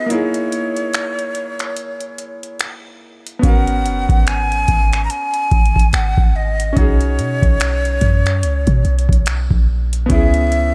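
A slow 72 BPM groove with a 16th-note swing drives this moody, sensual contemporary R&B excerpt, where a booming analog drum machine's deep kick, metallic hi-hat and finger snaps set the pulse under a breathy, vibrato-laced jazz flute melody with analog delay and a clear, vintage-toned concert grand piano, before a clean, sine-like 808-style bass joins at 3.4 seconds, all sitting in light digital reverb over chords moving from C#m69/A# through G#m11 and B69 to C#m7.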